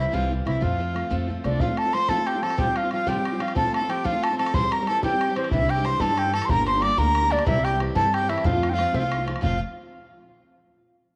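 A reedy wooden flute with vibrato and a crisp attack carries the melody up front in this lively, rollicking Celtic jig in F major at 123 BPM in 6/8, joined by a nasal, distant fiddle on a second line, dark picked steel-string acoustic guitar, a boomy bodhran and a woody pizzicato upright bass that drops out between 1.6 and 5.5 seconds, set in moderate plate reverb.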